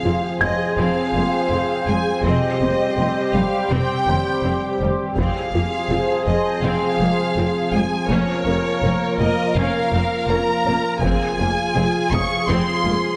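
A warbling, evolving analog drone sits up front with chorus, holding sustained chords beneath a lush, vibrato-rich violin section that carries the melody in this relentless, vast cinematic excerpt blending orchestra and electronics. Smooth violas, distant cellos in the background and a bright, focused double bass section fill out the strings, while a very quiet, squelchy blip pluck with phaser plays arpeggios and a felt-muted upright piano adds dark, intimate texture through digital delay, its action noise audible. Close, dry taiko hits with heavy sticks enter at 5.2 and 11.0 seconds, all set in a moderate recital hall reverb.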